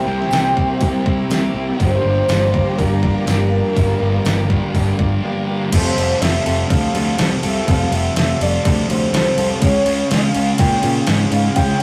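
A straight 4/4 beat from a detuned 8-bit drum machine, with its thumpy kick, medium-tuned snare, hi-hat and crash sitting up front, drives this blissful, dreamy excerpt of shoegaze and dream-pop rock, joined by an overdriven, round, punchy bass and a faint, distant tambourine that drops out at 4.4 s. A thick fuzz guitar and a compressed, scooped clean guitar tucked in the background carry riffs, while a mellow horn-like synth lead with soft attack, vibrato and chorus sings the melody over lush string-machine chords that stop at 5.7 s, just after a brief break, as the harmony shifts from C7 and Gm7 to Fadd9 and Db. The rough rehearsal-room sound is bathed in wet reverb and a saturated glow.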